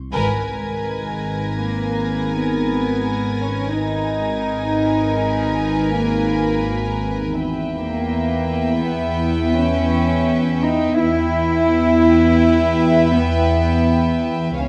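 Cinematic suspense film score in free time and G# harmonic minor, ominous and mysterious: a warbling, evolving analog drone with chorus sits under bowed, sul tasto string sections, where violins carry a close, lightly vibrato melody over a floating second violin line, a pure double bass section and an up-front cello section entering at 0.5 seconds, while a faint high violin texture ends at 7.0 seconds and the harmony moves from G#madd9 to Em at 7.4 seconds, all bathed in a wet scoring-stage reverb in this brief excerpt.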